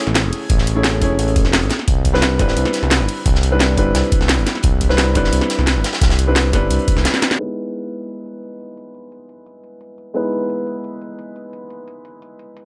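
A small-room ambience, softened by a low-pass filter, wraps this uplifting, warm-hearted excerpt of liquid drum and bass in a straight four-four groove. A vintage-toned grand piano sits up front throughout, its smooth chords moving from Amaj7 to Cmaj9 and given a trailing delay. Under the opening drop, a mellow, saturated synth bass blending sawtooth and triangle tones holds sustained low notes with a fast attack, while a knocking electronic kick anchors the beat. Two drum kits share the hi-hats and snare: an electronic kit with a cracking snare and bright hats stands up front, and a gritty, rolled-off acoustic breakbeat kit, high-pass filtered, sits in the background. A drum fill closes the drop, and at 7.4 seconds the bass, kick and breakbeat have fallen away, leaving the piano on Emaj7 and the electronic kit under a filter sweep until 12.7 seconds.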